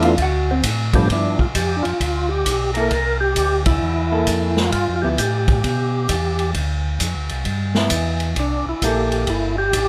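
A swinging 4/4 groove at 132 BPM, with eighth notes lilting at 65% swing, drives this soulful, bluesy soul jazz organ trio excerpt, cut from a longer piece. The vintage hollow-body jazz guitar, electric, clean and dark in tone, opens with a brief solo over the band until 1.1 seconds, then carries on as accompaniment until 9.5 seconds. The percussive tonewheel organ takes the melody with a fat, lightly overdriven sound, its second-harmonic percussion, key click and chorus vibrato spinning through a slow rotary speaker. Beneath it, a second tonewheel organ handles the bass line, mellow, round and clean, also turning through a slow rotary speaker with its own vibrato and key click. The acoustic big-band drum kit sits distant and roomy in a studio space, its punchy kick up front alongside a medium-tuned snare, hi-hat and ride cymbal, and the band hits an accent together at 3.6 seconds. Light reverb wraps the whole over harmony that moves through G13, C13, Dm7 and G6.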